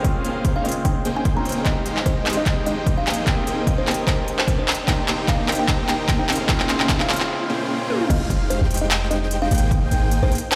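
Future bass in F minor at 149 BPM with a half-time, lightly swung feel, this lush, dreamy excerpt from a longer piece opens on a build-up where a woody, hollow kalimba carries the melody with tape echo and sidechain pumping. Around it sit a soft, felt-muted upright piano in the background with audible action noise and digital delay, a very quiet dark string section holding bowed chords until 7.3 seconds, and a huge, detuned supersaw riff that is heavily compressed and low-pass filtered. Punchy, overdriven electronic drums sit up front, with crisp hats, handclaps, toms and crash alongside the kick, while a faint riser runs through the build-up and a drum fill leads to a short break. At 8.1 seconds the drop arrives, as a deep, boomy 808-style bass with tube saturation and an airy background lead playing arpeggios with chorus both come in, and the chords cycle through Fm9 and Abmaj9. A moderate shimmer reverb and the stony echo of a bare room give the whole mix a spacious, cavernous sound.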